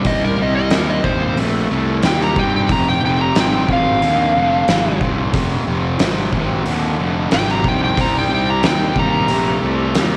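An overdriven slide guitar carries the melody high above the band, its warm tone touched by a slapback echo. Beneath it, a double-tracked, picked fuzz guitar sits up front with a distorted riff, while a fingered electric bass growls with bright fuzz. The oversized, low-tuned acoustic drum kit lays down a punchy kick, a fat snare and hi-hat, its saturated, rolled-off sound ringing in a stone room. A dark, very quiet picked lead guitar traces a second line in the background. This smoky, gritty slice of blues rock power trio and southern rock moves in a straight four over a Cm, Fm and Cm7 progression, with light studio reverb, and is cut from a longer piece.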